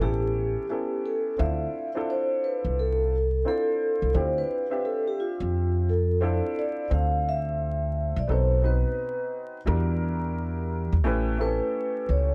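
A mellow, nocturnal jazz-hop groove opens at 0.0 seconds with vibraphone, upright piano and upright bass sounding together over an A7 that settles into Dm9, in D dorian at 87 BPM with a 63% swing on the sixteenths and tuning pitched slightly high at A4 = 445 Hz. The soft-mallet vibraphone carries the melody between F4 and F5, its metallic, ringing tone made airy by a fast motor vibrato and a slapback echo. Beneath it, the dark upright piano supplies worn, intimate accompaniment with a long sustain, a slightly detuned character and audible action noise. Up front, the plucked upright bass on steel strings gives a woody, warm foundation in the low register. At 6.9 seconds a second section begins, moving through B7b9 and Em7b5 before returning to A7, all within a short fragment cut from a longer piece. The production is dark and warm, with light reverb and a bed of vinyl crackle that suits the late-night mood.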